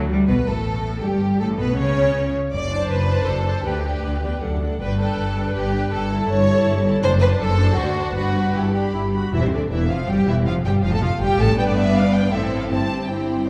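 A quick, spirited and graceful classical-period movement for string orchestra in triple time, where a smooth violin section carries the melody with light vibrato over an up-front, lush second violin line, soft-attacked violas, clear, focused cellos in the background and bowed double basses, all set in a dark recital-hall reverb that shifts to a new key center at 9.3 s.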